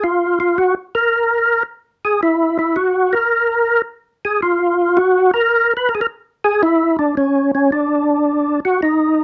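Late-night and smoky, this short jazz excerpt swings at 109 BPM in 4/4, with a relaxed lilt on the eighth notes. A percussive tonewheel organ carries the solo alone from 0.0 to 9.2 seconds, moving through a compact span from C#4 to B4. Its tone is full and lightly overdriven, with a third-harmonic percussion attack and an audible key click at the front of each note. Chorus vibrato and a slow rotary speaker give the sustained sound a gentle shimmer. The organ sits up front, caught by close, detailed microphones with a light touch of reverb around it.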